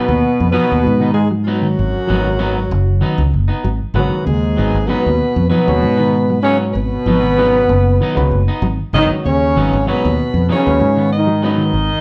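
A dark trombone carries the melody in this driving, hypnotic afrobeat excerpt, its smooth top bent by vibrato and scooped notes in a soloistic pop style. Out front beside it, a fingered electric bass sounds direct and amped, anchoring a straight 4/4 groove at 96 BPM in G# dorian, sitting on a single G#m7 chord throughout. A bright, present alto saxophone with light vibrato and a clear trombone section in the background supply second lines, while a mellow, clean electric guitar ripples through phaser-coloured arpeggios behind them. A twangy, slightly broken-up electric guitar adds fingered stabs, and from 4.0 seconds a reedy, gritty overdriven electric piano heard through a combo amp joins the accompaniment from the back of the mix. Light reverb gives the feel of a band playing live together in one room.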